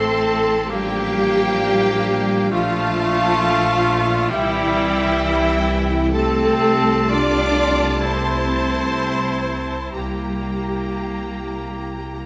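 Cinematic, emotional orchestral film score at a rubato 59-68 BPM, moving and full of longing, in which a lush, distant violin section carries the melody over harmony that opens on A minor while a second, background violin section, a bright vintage clarinet, an airy, very quiet flute ensemble and a close-miked cor anglais add supporting lines, a smooth viola section supplies the accompaniment, a mellow French horn section holds sustained chords, and close cellos with distant double basses form the bass, all set in a wet scoring-stage reverb in this fragment cut from a longer piece.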